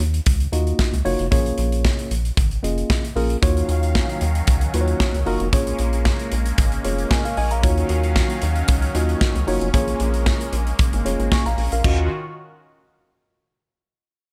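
A rubbery, hollow square-wave bass and a punchy, up-front studio drum kit open this slick, funky slice of early-eighties boogie funk at 114 BPM in Eb minor, with kick, snare, hi-hat and crash driving a straight 4/4 groove. A worn, slightly out-of-tune tine electric piano joins at 0.5 seconds, clean and direct, moving through the alternating Ebm9 and Bbm7 chords. At 3.4 seconds a brassy, bold analog pad swells into the background with sustained, detuned sawtooth chords treated with chorus and phaser. The electric piano adds a short fill from 6.8 to 7.6 seconds before the progression returns to Ebm9. A small room reverb gives the polished, airy kit and its medium-tuned snare a tight sense of space, and the passage is cut from a longer piece.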